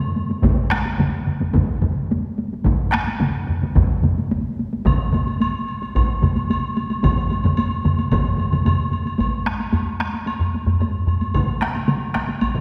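A straight 4/4 pulse that speeds up drives this powerful fragment of Japanese traditional drumming, where four taiko ensemble parts pound together from the opening moments, two struck with hard sticks and two with heavy sticks, two close and dry, one in a small room and one distant in a large room; a distant, woody woodblock joins at 4.9 s, and the music shifts into a new section at 9.2 s, inside a lingering concert-hall reverb.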